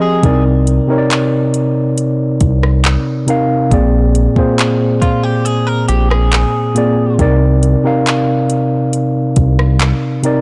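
A mellow tine electric piano sits up front in this moody, late-night contemporary R&B excerpt in C minor at 69 BPM, moving through Cm9, Bb9 and back to Cm9 over a dark, detuned sawtooth synth bass, a soft-kicked electronic drum kit with metallic hi-hats, handclaps and rim clicks, and a compressed, direct-recorded clean electric guitar playing arpeggios with subtle chorus and delay until 7.2 seconds, all within a digital ambience and a blown-out, overdriven recording.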